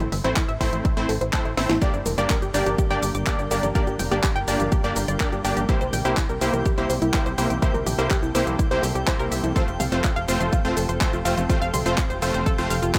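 A straight pulse drives this progressive house excerpt, with a punchy, tape-warm electronic kick sitting up front from 0.4 seconds and a layered house kit of cracking snare, handclaps, hi-hat and shaker, plus very quiet electronic toms and congas recorded in a smaller room. A tight sequencer bass with a ring-modulated sawtooth and square bite pumps against the kick, while a round, full-bodied analog pluck spins arpeggios through a filter sweep, chorus and dub echo. Bright, detuned supersaw stabs cut through up front, also pumping and echoing, and a drum fill at 1.6 seconds ushers in a thick, warbling vintage pad that sits in the background under chorus. A twinkling granular texture with an octave-up shimmer joins faintly at 2.1 seconds, adding sparkle. The harmony moves from Am to Gm, C7 and F, giving the driving groove a bittersweet cast within light digital ambience.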